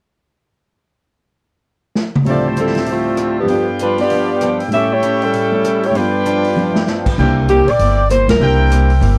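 Big band swing at 195 BPM, brassy and energetic, where a roomy, distant drum kit opens with a fill at 2.0 seconds before a smooth, up-front saxophone section carries the melody over Dm11 and G7 changes, clear trumpet section stabs with vibrato, a natural baby grand piano and a boxy picked archtop guitar in the background, until a woody, growly upright bass enters at 7.2 seconds ahead of a band accent at 8.2 seconds, all in light reverb, in an excerpt cut from a longer piece.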